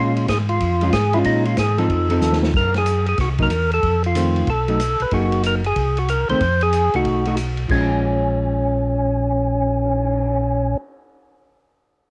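A brisk swung 4/4 at 186 BPM drives this soulful, late-night soul jazz organ trio in Bb minor, a short cut from a longer piece. The vintage drum kit enters at 0.2 s with ride, hi-hat, punchy kick and a medium-tuned snare, adding crash and cymbal swells, and plays a fill at 2.2 s. Its sound is natural and rolled-off, sitting low in the mix. Up front, a fat, percussive tonewheel organ carries the melody between Db4 and C5, lightly overdriven through a slow rotary speaker with third-harmonic percussion and vibrato. Beneath it, a second tonewheel organ plays a round, dark bass line from Gb1 to Bb2 with chorus vibrato and its own slow rotary. A clean, hollow-body electric jazz guitar fills out the accompaniment, moving through changes from Bbm7 and F7 to Cm7b5 and Gb69, all softened by cassette tape and light small-room reverb in a home-recording feel.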